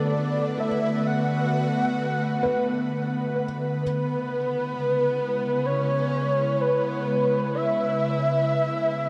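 Floating in free time, this short ambient excerpt drifts with a serene mood, its harmony resting on Bm7 before moving to C#m7 at 3.8 seconds. A breathy, flute-like synth lead carries the melody up front across the whole passage, its soft attack, gentle vibrato and chorus shimmer feeding into a shimmering reverb and delay. Alongside it, an ethereal, airy pad holds sustained chords from low to high, its detuned, mellow layers swelling in slowly and lingering with a long release. In the background, a felt-muted upright piano adds soft, intimate arpeggios with audible action noise and short sustain, bathed in shimmer reverb and delay until it stops at 3.8 seconds. The whole passage sits in a huge, wet reverberant space that lets each tone hang in the air.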